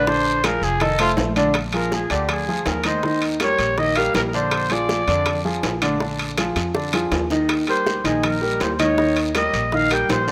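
Afro-Cuban jazz at 162 BPM in 4/4 with a straight feel, this sunny, danceable excerpt sits in Bb mixolydian and moves through Bb9, F7, Bb7 and Eb7 before landing on Eb. A growling trumpet carries the melody with a soft attack, scooped notes and vibrato, sounding gritty and distant, and it takes a solo at the top from 0.0 to 1.5 seconds before dropping out at 5.5 and returning at 7.7. An up-front upright piano with a woody, long-sustaining tone supplies the accompaniment, while a dark pizzicato upright bass with steel strings holds down the low end. Bongos, very quiet congas with a thick skin and a raspy guiro fill out the percussion, and ringing, compressed metal-shell timbales join at 0.4 seconds and stand out with a saturated edge, with a drum fill from 6.6 to 7.5 seconds. Light reverb frames this rough home demo mix.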